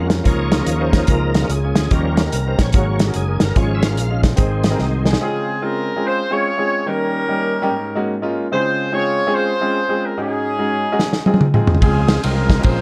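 This uptempo gospel excerpt has a swung, jubilant and soulful feel. A clear grand piano provides accompaniment throughout, while a bright, shouting tonewheel organ with overdrive, chorus vibrato, key click and a slow rotary speaker takes a solo over the opening 5.2 seconds. Behind it, a barely audible French horn section holds soft-attack chords. An amped fingered electric bass and an up-front soul drum kit with a tight kick and medium-tuned snare drive that opening, and a drum fill leads into the next passage. From there, a distant, roomy jazz-style horn section carries the melody over the piano on chords such as Dbmaj7, Eb7 and Fm7, with the drums returning with a fill at 11.0 seconds, followed by organ and bass at 11.8 seconds. The production is dark and warm, with light small-room reverb.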